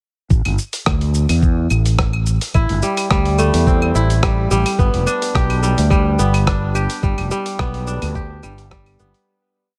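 Organic downtempo in A minor at 107 BPM, this short, earthy and mystical piece sets a lightly swung groove of gritty, tape-warm sampler-style drums, with claves, half-time hi-hat, shaker and rim click layered over a thumpy electronic kick, beneath a growly, up-front fretless bass riff that carries subtle chorus and sidechain pumping. At 2.5 seconds a bright, crisp fingerpicked kora enters with a ringing delayed arpeggio, a 10-step loop that drifts against the bar as the harmony moves from Am7 to G. The dry mix fades out from 6.3 seconds to its close.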